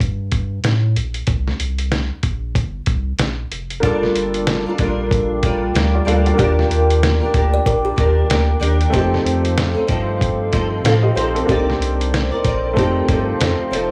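A round, deep analog bass and a muffled, pitched-down sampler-style drum kit with a thumpy kick and fat snare open this lonely, hazy bedroom-pop excerpt at 94 BPM with a swung 16th feel, before a clear, woody upright piano and a bright, fingerpicked flamenco guitar with chorus and vibrato, both in plate reverb, enter at 3.8 seconds, a warbling, nostalgic tape-like pad follows at 4.4 seconds, and a ringing kalimba with slapback echo sounds briefly in the background at 7.5 seconds over chords moving from Gm7 through Ebmaj7 and F7 to Cm9.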